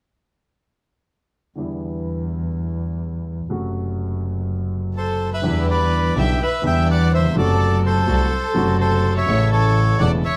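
Tango in E minor at 125 BPM in 4/4, played with a rubato feel and a passionate, tense mood, cut from a longer piece. A warm baby grand piano carries the accompaniment with a present, polished tone, while a bowed double bass, played by one player up front, gives a smooth, boxy low line with vibrato, both entering at 1.6 seconds. At 5.0 seconds a reedy, bright, airy bandoneon takes the melody up front, joined by a chamber violin section playing a second line sul tasto with light vibrato and a soft, intimate attack in the background. From 5.4 seconds a studio string section adds very quiet, distant stabs, bowed sul tasto with a pure, floating sound, as the harmony moves between Em7 and F#dim before landing on A. The close, detailed microphones and light reverb keep the ensemble clear and immediate.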